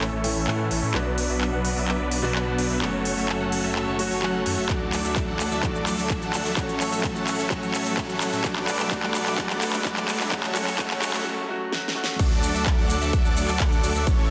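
A clear baby grand piano with audible action noise opens this anthemic, uplifting festival progressive house build-up at 128 BPM, set against a bright, detuned supersaw riff, an airy unison pad in the background and a thick detuned saw bass, all pumping under sidechain compression, along with a big-room drum kit with a huge snare, crisp hats, claps and shaker, everything sitting in a lush hall reverb. A faint riser joins at 2.9 seconds and a punchy, tape-warm electronic kick arrives at 4.7 seconds, while filter sweeps on the supersaw and pad and a running drum fill carry the A, Bm, F#m and D progression to a short break. At 12.2 seconds the piano drops out and the drop lands on D, with the dense, heavily limited master pushing the full-bodied supersaw and drums up front.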